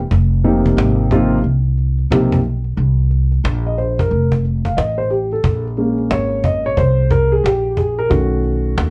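A dark, intimate concert grand piano with audible action noise and a vintage, smooth tone accompanies this mellow, nocturnal, swung jazz-hop excerpt before taking a solo at 5.4 seconds, over a woody, thumpy pizzicato upright bass and a snappy, close cajon struck with hard hands, with light reverb and a cassette-tape character coloring the recording.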